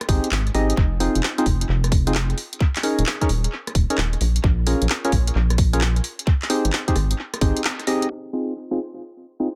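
A rubbery, bouncy square-wave bass sits up front in this moody, soulful two-step UK garage excerpt at 131 BPM in F minor, alongside a tight electronic kick, a swung garage kit of handclaps, warm hi-hats and rim clicks with analog delay, and hollow, percussive organ stabs with chorus and delay that carry the Abmaj7, Fm7, Eb7sus4 and Bbm7 chords, before a band accent at 7.6 seconds and a filter sweep on the stabs from 8.1 seconds, inside an echo-heavy, low-pass-filtered mix with light digital reverb.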